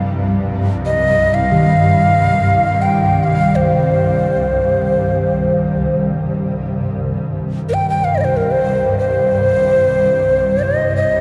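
In free time, this haunting, spacious world meditation piece in C minor pentatonic opens on a cloudy, detuned granular pad drone, evolving and blurred with its own built-in reverb. At 0.9 seconds a breathy, hollow cedar flute in Native American style enters up front with the melody, showing vibrato, a tongued chiff and an analog delay. From 1.5 to 9.0 seconds a metallic bronze singing bowl rings with slow beating in the background, all within a dreamy mix soaked in a huge ambient reverb of 8.9 seconds, cut from a longer piece.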